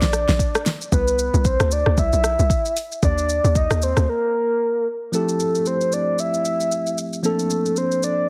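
A soulful amapiano groove at 114 BPM in 4/4 with a swung sixteenth feel in F major opens on a smooth electronic R&B kit of soft kick, fat snare, rim click, shaker and hats, with a hollow, bouncy log drum bass that drops out at 4.1 seconds. A round, dark octave-layered synth lead carries the melody throughout with chorus, delay and vibrato, and a clean tine electric piano joins at 5.1 seconds as the harmony moves to Fmaj9 and Bbmaj9, all set in light reverb with a heavily compressed, radio-like sound.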